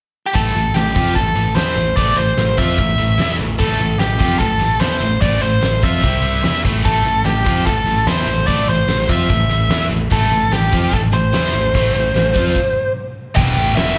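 Menacing, driving hard rock in A minor at 147 BPM, caught live through a club PA, where an up-front biting lead guitar with overdrive, plate reverb and slapback echo carries the melody over background riffs from a scooped high-gain guitar and a tight distorted guitar, a growly fingered bass and a huge arena kit with a fat snare and punchy kick, until the band stops at 12.5 seconds and a second scooped guitar, double-tracked, enters at 13.3 seconds just ahead of an E minor chord.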